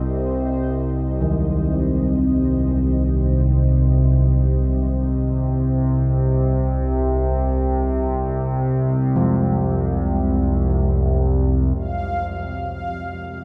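A cavernous, dark wash of huge reverb carries this desolate C minor ambient drone fragment in free time, where an up-front sawtooth analog drone with phaser and chorus rumbles low under a sweeping resonant pad's sustained chords that fade out over the first 11.8 seconds, while mellow bronze carillon bells ring soft arpeggios in the background from 1.2 seconds to the end, joined at 11.8 seconds by a bright, bubbling stepped-filter texture.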